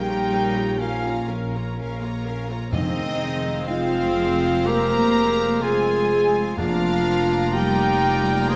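Opening on a rich, distant violin section floating the melody over the dark, roomy sustained chords of a French horn section, this bittersweet, moving cinematic orchestral passage in a rubato 4/4 weaves second lines from a clear solo clarinet, a metallic silver flute and a softer violin section, with a sul tasto viola section in accompaniment, an intimate cello section and a close double bass section holding the bass, and hard-mallet timpani entering at 2.7 s, set in a wet scoring-stage reverb.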